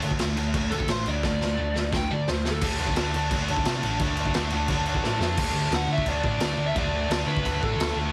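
A straight 4/4 punk rock pulse from a raw garage drum kit, up front with a punchy kick, a medium-tuned snare and a gritty, saturated sound, drives two tight distorted guitars playing a bright riff on a D5 chord, one set in the background, over a growly overdriven picked bass, while an overdriven semi-hollow guitar with delay adds a hollow-body melody from 0.7 to 2.6 seconds and again from 5.8 seconds, the whole raw, urgent cut from a longer piece carrying a heavily compressed radio sound with little reverb.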